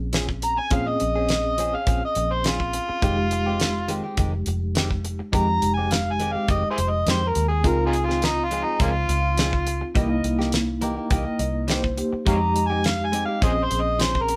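Smoky and brooding, this straight-eighth soul blues in F minor at 104 BPM is led by a gritty, overdriven harmonica solo full of tongue slaps and scooped notes, over a tremolo-laced tine electric piano that adds a fill at 10.5 seconds, a round, foam-muted electric bass, bright, clean guitar stabs and a dry 70s drum kit with a fat snare, while a dark horn section slips in behind with sustained chords at 7.6 seconds, the band playing live in one room with moderate reverb.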